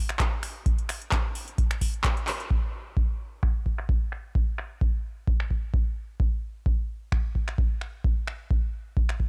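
A swung house groove at 130 BPM in 4/4 drives this short, gritty and trippy cut from a longer piece, with the sixteenths pushed just off the grid. A deep, overdriven electronic kick sits up front from 0.2 seconds, its analog weight given extra grit by being re-recorded in a small room. Alongside it, a booming analog drum machine supplies crash cymbal, finger snaps, handclaps and metallic hi-hats, also overdriven and close, with low-pass filtering dulling its snare, hats, cymbals and room sound. At 2.3 seconds a drum fill and a band accent mark the turn into the second section at 2.5 seconds, where a filter sweep on the drums runs through to the end. The mix is dry and upfront, holding the whole thing in a tight, raw space.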